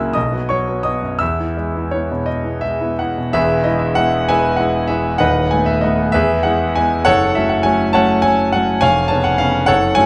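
A clear, intimate concert grand piano opens this passionate romantic character piece alone, unfolding in a rubato 6/8 in E major at roughly 54-71 BPM by the dotted quarter, its deep bass, audible action noise and long sustain placed up front within a wet recital hall reverb, as the harmony settles from B to E before a new section at 3.4 s moves through B7/D#, E, F#m and C#7/E# in this brief passage cut from a longer work.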